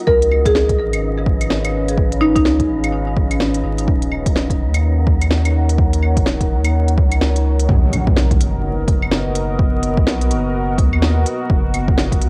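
Wistful and ghostly, this future garage excerpt moves at 126 BPM in 4/4 with a swung sixteenth-note feel, cut from a longer piece. A deep, moody sawtooth pad carries sustained chords through the whole passage, softened by chorus, reverb and tape coloration and pumping against the kick, while a breathy, wind-like noise texture sits dark in the background until 7.7 seconds. A bright, woody marimba states a brief melody only in the opening seconds, roughened by vintage 12-bit sampler grit and tape echo. Underneath, a round sine sub bass pumps with the punchy, overdriven kick, and an organic electronic kit adds claves, smooth hi-hats and a woody snare with a tape-warm sheen. At 7.7 seconds the harmony shifts from Db7 and Ebm7 to Bmaj7 as a distant electronic impact marks the new section, all set in light digital ambience with home-cassette character and vinyl crackle.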